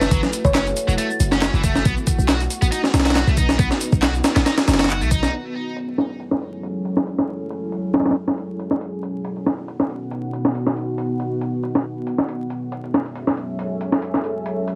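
Swung 16ths drive this gritty, swaggering breakbeat excerpt at 138 BPM in F# dorian, where a compressed, pitched-up sampler kit with a thumpy kick and high-tuned snare sits up front beside overdriven electronic shaker and handclaps, a deep, boomy 808-style bass and a bright, double-tracked high-gain guitar riff both drop out at 5.3 s, a short woody kalimba note with AM-radio grit flickers at 0.4 s, and a moody, detuned sawtooth pad sustains F#m7 and B chords under sidechain pumping, all wrapped in heavily compressed radio tone and vinyl crackle.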